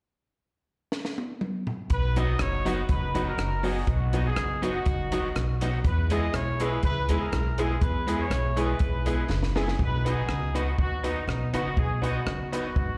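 Joyful, cheerful ska at 122 BPM in B major, this excerpt opens with a compact cocktail drum kit playing a fill from 0.9 seconds, its dark, rolled-off sound set up front with a tight kick and high-tuned snare. At 1.9 seconds a smooth-topped horn section with light vibrato takes the melody over a woody, thumpy pizzicato upright bass on gut strings, soon joined by a clean, scooped semi-hollow electric guitar with subtle chorus and jangly, detuned stabs from a honky-tonk upright piano, the horns, guitar and piano all carrying slapback echo. The chords move from B to E and back to B after another drum fill at 9.3 seconds, all heard as a live gig through the venue's PA with recital-hall reverb.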